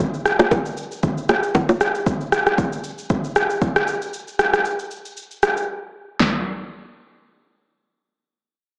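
This amapiano clip, cut from a longer piece, moves at 116 BPM in 4/4 with a light 16th-note swing of 55%, and its mood is deep and late-night. A deep house drum kit carries the groove, electronic and layered, with a punchy kick, a fat snare, rim clicks, shaker and toms sitting up front. It was re-recorded in a large room and bears a cassette tape coloring. Bright, acoustic congas and bongos open alongside it, close and dry with hard hands, until 1.8 seconds. A break arrives at 5.7 seconds, and the kit plays through to 6.3 seconds as the music passes into a new section. The whole recording carries moderate spring reverb and has a homespun, small-speaker character, as if captured on cassette.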